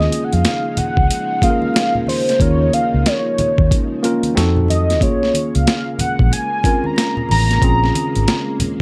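A light reverb softens this late-night, introspective R&B and neo-soul excerpt in Bb minor, moving at 92 BPM with a lazy swing on the sixteenths. Up front, a velvety synth lead built from detuned sawtooth and triangle tones carries the melody, its vibrato and chorus trailed by slapback echo and plate reverb. Beneath it, a worn, slightly out-of-tune tine electric piano with light overdrive plays the accompaniment, while a soft string machine warbles in the background with slow-attack chords. A gritty, pitched-down boom bap kit with a thumpy kick and high-tuned snare sits up front beside a dark, round, foam-muted fingered bass. Low-tuned, thick-skinned congas played with soft hands enter at 0.1 s, close and dry in the background, as the harmony moves from Eb9sus4 to F7b9 at 4.4 s and settles on Bbm9 at 5.0 s.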